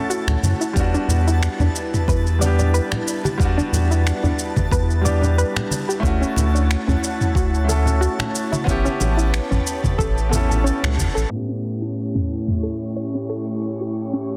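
A round, dark analog bass with tube saturation sits up front in this smooth sunset chillout piece, joined by a deep, tape-softened electronic kick and a deep house kit of finger snaps, shaker and toms, with bright, compressed congas in the background. A clear, intimate grand piano with audible action noise and tape echo plays the accompaniment over Dmaj9, Em7 and A9 chords, while an airy, breathy pad holds sustained chords, a soft pluck with chorus and echo plays gentle arpeggios, and a twinkling granular texture sparkles high above. A band accent lands at 10.8 seconds, then the bass, kick and congas stop by 11.3 seconds. The drum kit drops out at 12.6 seconds, and a filter sweep carries the remaining keys, pad and texture to the end of this section cut from a longer piece.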